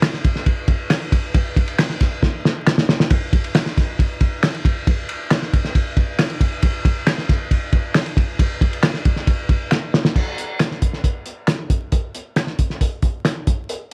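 A cloth-damped, thuddy drum kit with a fat snare, dark cymbals and a gritty, muffled lo-fi character sits up front in this passionate, urgent soul clip at 136 BPM in straight 4/4, alongside close, human finger snaps, with drum fills at 2.2 and 9.7 seconds before the music moves into a new section at 10.2 seconds, over light reverb and a bed of vinyl crackle.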